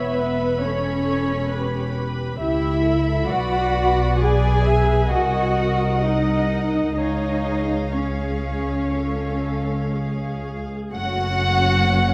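This melancholic, yearning fragment from a slow romantic movement for string orchestra opens with every section bowing together at once, all of them muted con sordino: a distant violin melody with vibrato, a close second violin line with light vibrato, a viola accompaniment with a soft attack, and a cello bass with a smooth top. Beneath them, the double basses sound lush and up front, while the whole ensemble carries a veiled, dark tint and moves with rubato at roughly 59-69 BPM in 4/4. The harmony moves through C#m7b5/E, G#dim/B and G#7/B# to C# at 6.9 seconds before turning to F#m at 10.9 seconds, all set in a moderate scoring-stage reverb.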